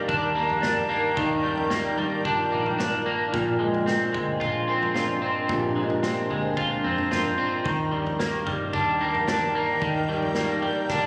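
A straight 4/4 pulse at 111 BPM from a vintage acoustic drum kit, with punchy kick, medium-tuned snare and toms, carries this floating, dreamy dream pop piece in Eb major as it moves from Ebmaj7 to Bb9 and back, closing on a drum fill at 10.9 s. Up front, a twangy, slightly broken-up electric guitar picks arpeggios through lush chorus and tape echo, while a round, foam-muted bass sits in the background and a shimmering, ethereal pad with slow attack and granular texture holds sustained chords. A very quiet, metallic vibraphone with its motor off enters at 2.3 s, and the mix sits in moderate plate reverb and small-room ambience with the character of a phone recording made in the room.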